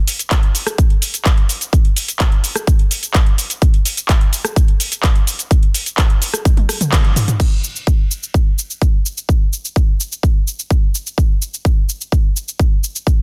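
This uplifting, anthemic EDM excerpt opens at 0.1 s with a layered, produced pop drum kit of crash cymbal, handclaps, metallic hi-hats, rim clicks, shaker and toms, carrying a tape-warm sheen up front in the mix. A punchy electronic kick joins at 0.3 s, also sitting up front and louder than the kit, driving a straight 4/4 pulse at 127 BPM. The passage begins in the middle of a drop, and a drum fill from 6.5 to 7.4 s, with a band accent at 6.9 s, carries the music into a new section. Both drum parts then continue together through to the end. The sound is dry, with little reverb, and the master is dense and heavily limited in a modern style.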